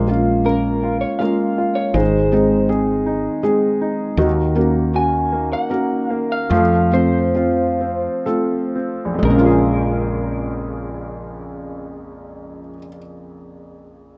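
This acoustic folk-pop ballad in a straight three-time feel sounds heartbroken and reflective, a short cut from a longer piece. A soft, felt-muted upright piano plays intimate arpeggios up front, its thick felt and audible action noise lending a hushed, close-up character, while a warm, smooth, vintage grand piano supplies the accompaniment, also up front. A woody fretless electric bass sits forward in the mix with a round, punchy, hollow-body tone. From 0.5 seconds, an electric guitar carries the melody through a small old amp, its fingered line dark, slightly broken-up and lo-fi, shimmering with harmonic tremolo. The chords move from Bbm7 through Ab, Ebm7 and F before returning to Bbm7, and the pace slows between 4.2 and 9.2 seconds before a brief second section. A moderate plate reverb glosses the rough home demo mix.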